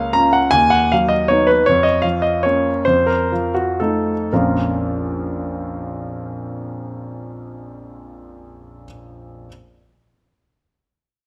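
A clear, polished grand piano carries this brief classical waltz alone, sitting up front with an intimate presence and the soft clicks of its action audible beneath the notes. The mood is bittersweet and nostalgic, with the triple-metre lilt bent by rubato and a gradual slowing that settles in before the opening phrase closes at 4.3 seconds. From there a new passage begins, and the piano spans a broad register from deep bass notes to the high treble. Close, detailed miking captures every nuance of touch, while a moderate recital-hall reverb adds a gentle halo around the sound. Lifted from a longer piece, the fragment runs to 9.5 seconds.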